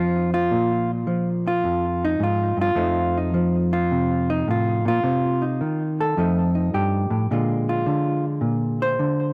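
Sophisticated and playful, this solo jazz excerpt swings at 106 BPM in F mixolydian. A lone electric hollow-body guitar sits up front, dark and clean, fingered and touched with tape echo, moving through F7, Cm and Bb7 across a dry, close 1970s-style studio sound with light reverb.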